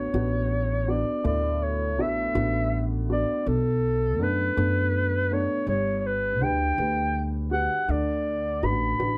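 Acoustic folk-pop ballad in D major at 54 BPM in a straight 6/8, hopeful and heartfelt, where a breathy, whispered clarinet carries the melody up front with mellow vibrato and a jazz-style intimacy over a worn, slightly detuned upright piano and a woody, dark pizzicato upright bass on steel strings, all three playing through the full 9.2 seconds under light reverb as the chords move from D6 through Bm7 and Gmaj7 back to D6 in this fragment of a longer piece.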